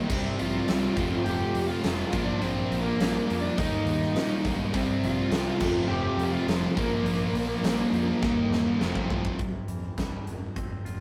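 A rough rehearsal-room recording in a moderate stone room captures a cathartic, restless stretch of quiet-loud alternative rock in Bb major at 103 BPM, where a huge arena drum kit with a fat snare, punchy kick and bright cymbals plays alongside a growly fuzz bass, a sludgy overdriven guitar, a thick fuzz guitar and a very quiet double-tracked, compressed distorted guitar, all churning through riffs while a bright high-gain lead guitar carries the melody. A drum fill at 8.2 s leads into a new section at 9.4 s, where the riffing guitars drop out and a clean, twangy guitar plays arpeggios through harmonic tremolo over the continuing bass and drums.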